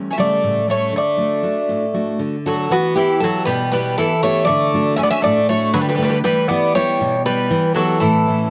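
Set in a lightly reverberant space, this relaxed, sunny Greek folk piece in 7/8 at 238 BPM (eighths) in D major opens with a full-bodied, picked dreadnought acoustic guitar up front, its finger squeak audible, before two metallic, double-strung bouzoukis with some octave-doubled courses join at 0.1 seconds, one carrying the high melody and the other a lower second line, over chords moving from A7 to D and then alternating between Em and D before settling on A.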